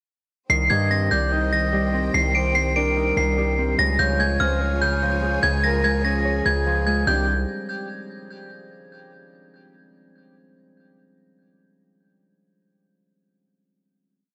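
A half-time hip hop groove in 4/4 sets a menacing, eerie mood, anchored by a distorted, aggressive 808-style bass holding long sub-bass notes up front. A ringing, inharmonic FM bell loops the melody through chorus, tape echo and a low-pass filter, over a fingerpicked Celtic harp playing a rising eighth-note arpeggio, a lush bowed string section sustaining chords in the background, and a breathy flute-like synth lead adding a sparse counter-melody from 0.7 seconds. The hook moves from Cmadd9 to Db at 3.8 seconds before settling on a final Cmadd9 chord at 7.1 seconds, all heard in a small room with gritty hardware saturation.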